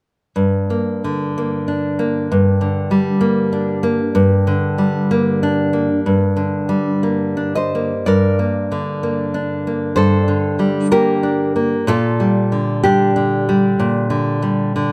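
This romantic piece for solo classical guitar, cut from a longer work, carries a melancholic yet passionate mood. A single nylon-string guitar, fingerpicked in a classical manner, plays alone from 0.4 seconds to 14.9 seconds, its bright acoustic tone placed up front. The pulse is slow and flexible, with uneven beats and an expressive rubato that lets phrases breathe. The music falls into two sections, with the second beginning at 8.1 seconds, and the harmony settles onto a new bass note near 11.9 seconds. Close, detailed microphones and light reverb capture every nuance of the playing.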